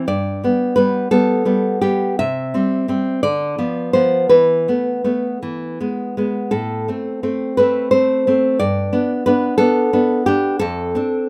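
A nylon-string classical guitar carries this short romantic solo on its own, fingerpicked and placed up front with a warm, intimate acoustic tone. The mood is wistful, moving in 6/8 with a free, rubato feel that lets phrases breathe. The harmony drifts from G to C, then through Bdim/D to a suspended Esus4 that settles onto E at 5.4 seconds before turning to A minor. From there it passes back through G and comes to rest on Dm7/F at 10.6 seconds, just before the cut. Light reverb softens the sound, and the rough home-demo mix gives it a close, private quality, as if heard in the same room as the player. The 11.3-second clip is cut from a longer piece.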